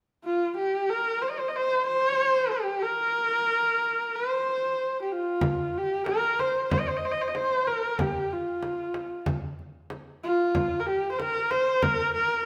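In a straight 4/4 at 93 BPM, this solemn, windswept Mongolian folk piece in C yu mode, cut from a longer performance and played live in one stone room with a 1.2-second reverb, opens at 0.2 s with a husky, bowed horsehead fiddle carrying the melody up front between F4 and Eb5 with vibrato and portamento, before a deep, close and dry frame drum played with soft hands joins at 5.4 s for the second section.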